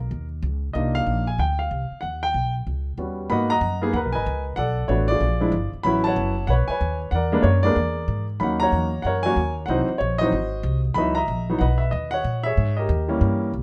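Smoky, moody jazz piano trio swing at 188 BPM in which a natural, up-front baby grand piano carries the melody over a woody, growly pizzicato upright bass under light reverb, shifting through rich altered harmonies before settling into G# minor at 3.3 seconds in this fragment cut from a longer piece.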